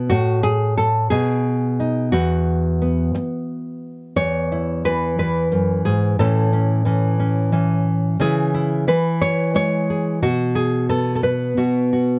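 A fingerpicked nylon-string guitar plays alone through this peaceful, gentle folk fragment cut from a longer piece, moving in an unhurried 6/8 at 59 BPM (dotted quarters) in E major, tuned to A4 = 442 Hz, its deep classical tone sitting up front under close, detailed microphones with little reverb as it ranges from E2 to C#5, opening over B and Esus2 before a new passage from 4.2 s moves through E, A, C#m and B5.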